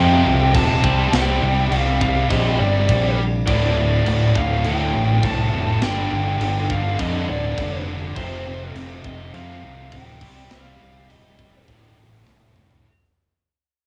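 This dark, relentless heavy metal excerpt opens with a wall of guitars and bass, a heavy high-gain rhythm guitar up front and a tight, bright distorted second guitar sitting in the background, both picking a riff in D phrygian at 102 BPM in 4/4 with a half-time feel. Above them, a lead guitar through a small cranked amp picks an overdriven melody with a dark tone, while a growling fingered electric bass, direct and amped with bright overdrive, pushes up front underneath. The tight metal drum kit joins at 0.5 seconds, its saturated sound built on a tight kick, a medium-tuned snare, crashes and toms, with a rolled-off top. The guitars carry a cassette-tape character, and the whole piece has the feel of a home recording in a small room with a touch of small-room reverb. The chords move through power chords from F5 to C5, D5 and G5, darken briefly on Cm, and land back on D5 as a drum fill arrives at 12.3 seconds, all under a fade-out that spans the entire clip.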